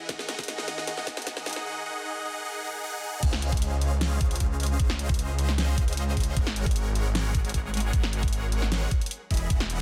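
A drum fill opens this bright, euphoric future bass excerpt at 153 BPM in a half-time feel, with lush, detuned supersaw chords riffing through phaser, sidechain pumping and digital delay as the build-up unfolds over Gbsus2. At 3.2 seconds the drop lands on Dbmaj7, bringing in a thick, chorused detuned saw bass that sits up front and pumps, while a knocking electronic kick and a dubstep kit with a huge snare, bright hats and crash cymbal drive underneath in small room ambience. The harmony moves through Ab7sus4 before touching Emaj7 at 9.3 seconds, all in a dense, heavily limited modern master.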